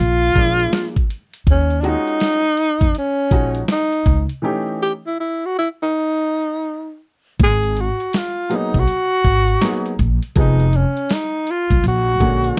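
A dry, close 1970s-style studio sound frames this relaxed, warm jazz-hop excerpt at 81 BPM, swung on the sixteenths. A breathy, whispered tenor saxophone carries the melody up front with vibrato and scooped notes, over a woody pizzicato upright bass on gut strings, a warm upright piano with short sustain entering at 0.3 seconds, and a gritty, compressed sampler-style drum kit with a thumpy kick, re-recorded in a large room and heard from 0.4 seconds. A break runs from 4.4 to 7.4 seconds as the harmony moves from A#7 through D#m11 and G#m9 to A#7alt.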